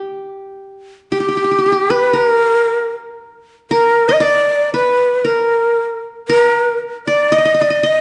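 The recording sits in a moderate recital hall, with a reverb tail of about 1.5 seconds and a top end that stops at 10.5 kHz. This stately, warm passage of Arabic maqam ensemble music, cut from a longer piece, moves at 116 BPM in a straight 3/4. The qanun opens at 0.0 seconds as the second line, plucked with fingerpicks, its triple strings giving a bright-edged acoustic ring close to the listener. At 1.1 seconds the end-blown reed-cane ney enters up front with the melody, sitting louder than the qanun, its breathy, shining tone carrying vibrato, a soft attack and an unsteady quality. Both instruments share the range from G4 to Eb5 and continue together to the end at 8.0 seconds.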